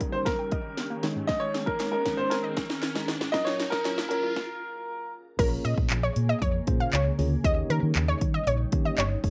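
An energetic, confident dance-pop excerpt at 117 BPM in Bb minor opens on a worn, slightly out-of-tune tine electric piano and a glassy FM pad, both pumping under sidechain. Meanwhile, a lush unison pluck arpeggiates in the background, a house drum kit with a punchy kick and cracking snare plays a fill, a riser builds, a very quiet group handclap joins, and a clear concert grand piano carries the melody with slapback echo. After a brief stop, the drop arrives at 5.4 seconds: a bright, detuned analog pluck takes over the melody and a dark, foam-muted fingered electric bass enters up front, all within a close, dry 1970s-style studio sound with light reverb and the pad's ethereal chorus sitting behind.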